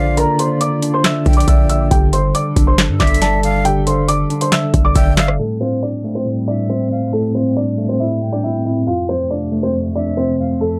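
A booming, overdriven analog drum machine with a deep kick, crisp snare, metallic hats, handclaps and rim clicks drives this eerie, hard-hitting half-time trap excerpt at 138 BPM in A phrygian, alongside a punchy, saturated 808-style bass; both drop out at 5.4 s, leaving a dark, boxy grand piano melody, a clean tine electric piano, a hollow chorused pad in the background and a breathy flute line with vibrato and analog delay, in a dry, gritty, low-passed recording.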